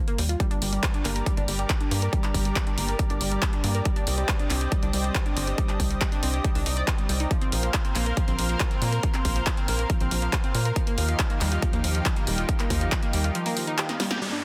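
A dense, heavily limited modern master with light reverb carries this emotional, driving uplifting trance excerpt at 139 BPM, moving through Gm, Cmadd9, Bbsus2 and Ebadd9. An overdriven, up-front electronic kick and a punchy analog drum machine with handclaps, hi-hat and snare in a short room anchor a tight sawtooth sequencer bass. Meanwhile a round, warbling analog pluck plays arpeggios under a filter sweep with chorus, tape echo and cassette tape colour, a lush, detuned unison pad holds sustained chords, and the pluck, bass and pad pump with sidechain, before a drum fill at 13.9 seconds and a band accent at 14.1 seconds lead into an electronic downlifter at 14.2 seconds.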